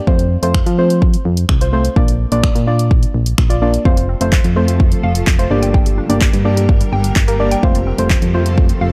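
A straight 4/4 deep house groove at 127 BPM drives this summery, carefree dance-pop excerpt in F major, with a layered kit of deep kick, dark hats, handclaps and finger snaps up front, a punchy, round FM bass and soft, chorused chord stabs that pump with the sidechain over F, Bb and Gm, while a hollow, warbling, detuned square-wave pluck with digital delay enters with arpeggios at 3.9 seconds, a cloudy, evolving granular pad blooms in the background from 4.5 seconds, and a very quiet downlifter and swell mark the edges of a dark, lightly reverberant mix.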